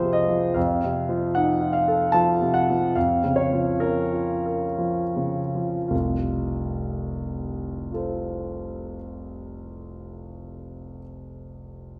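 A romantic classical character piece for solo piano, this bittersweet, brooding fragment of a longer work moves in a rubato 3/4 at 50-77 BPM, tuned to A4 = 436 Hz, as an up-front concert grand with clear tone, deep bass and long natural sustain ranges from F1 to A5, slows through the opening 5.9 seconds over F minor, F7 and B-flat minor harmonies before settling on F major, and rings out in a wet recital hall.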